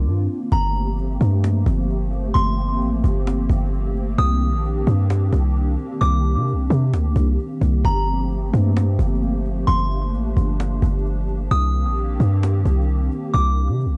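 Dry, lo-fi cassette sound with its top end dulled frames this spacious, melancholic 14-second excerpt of atmospheric cloud-rap at 131 BPM in a half-time 4/4 feel in C dorian, where a hollow, flute-like pad with ensemble chorus and tape grit sustains Cm9 and Gm11 chords over a deep, boomy 808-style bass that sits up front, while a delicate, tinkling FM tine bell with chorus, filtering and analog delay carries the high melody from 0.5 seconds and a snappy, close cajon keeps time underneath.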